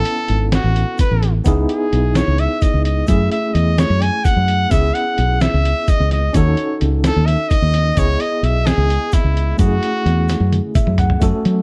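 A clear, close-miked jazz trumpet carries the solo melody with light vibrato over a driving, intricate progressive instrumental in 7/8 at 258 BPM (eighths), set in F# dorian and moving through chords such as Amaj7, C#m7, F#m7 and D#m7b5. Beneath it, a gritty overdriven tine electric piano with fast tremolo plays accompaniment through a combo amp, while an up-front, foam-muted fingered electric bass anchors the low end. A compressed, pitched-down sampler-style drum kit with a thumpy kick and muffled overdrive enters almost at once, followed shortly by a grainy tube shaker in the background. The drums begin a fill around 10.3 seconds and the electric piano adds its own fill just after, in this dark, lightly reverberant cut from a longer piece.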